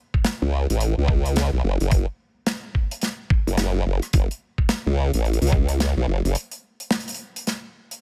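A dry, close sound with little reverb opens this short, gritty glitch hop fragment in F# minor, cut from a longer piece and moving at 108 BPM in 4/4 with a 61% swing on the sixteenths. An electronic kick drum, sampler-style, pitched down and thumpy, sits up front from 0.1 s, joined by a polished acoustic kit of hi-hat, rim click and medium-tuned snare that carries a small-room airiness. From 0.4 s a saturated, detuned formant-sweep wobble bass growls between F#1 and C#2, its sawtooth and sine layers wobbling through a formant filter with a fast attack, sustained notes and a chorus sheen. The mood is swaggering, with the kick, kit and bass all placed up front. The kick stops at 5.7 s, then a break arrives at 6.4 s as the bass drops out, and the kit carries on alone until 8.0 s.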